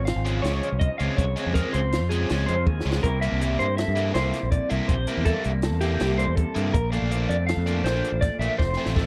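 A dry, close 1970s-style studio sound frames this intricate, playful math rock and midwest emo excerpt in 5/4, where a compressed, slightly broken-up guitar through a small old amp plays chorus-tinged accompaniment, a second twangy, lo-fi guitar picks phaser-coloured arpeggios high above, a biting, double-tracked overdriven guitar enters with a riff at 0.2 s, a bright, growling fingered bass sits up front, and a compact cocktail drum kit with a high-tuned snare and tight kick adds fills at 2.7 and 8.6 s over chords moving from Dbmaj7 through C7 to Bbmaj7.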